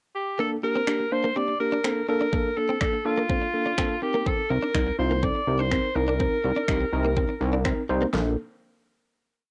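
A four-on-the-floor dance-pop beat at 124 BPM drives this short, summery piece in Bb major, with an overdriven, layered electronic kit of knocking kick, fat snare and finger snaps arriving at 0.9 seconds, and a glossy, retro chorused synth bass adding an off-beat pulse from 4.5 seconds. A mellow, worn and slightly out-of-tune tine electric piano comps eighth-note chords, pumping with the sidechain, while a direct-recorded clean guitar picks a muted single-note riff through ensemble chorus, moving from Bbmaj7 to Cm7 and back. Up front, a bright alto saxophone with light vibrato sings motif-based pop phrases, all with a dry, cassette-tape home-recording character before a closing chord at 8.1 seconds.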